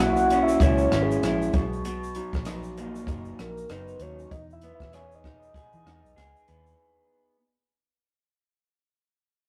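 A 97 BPM 4/4 groove with a 16th-note swing drives this hazy, nostalgic indie and bedroom pop fragment in E lydian, where a soft octave-layered synth lead, round and warbling with chorus, phaser and vibrato, carries the melody as a solo over a slightly broken-up, lo-fi electric guitar through a small old amp with warbly pitch drift, a foam-muted vintage fingered bass, and a compact cocktail kit of hi-hat, punchy kick, rim click and shaker with a rolled-off top, all moving through F#7, Bmaj7 and Emaj7 in a rough rehearsal-room sound with tube saturation and stone room reverb as a fade-out runs from the start to 6.8 seconds, with the guitar lingering until 7.4 seconds.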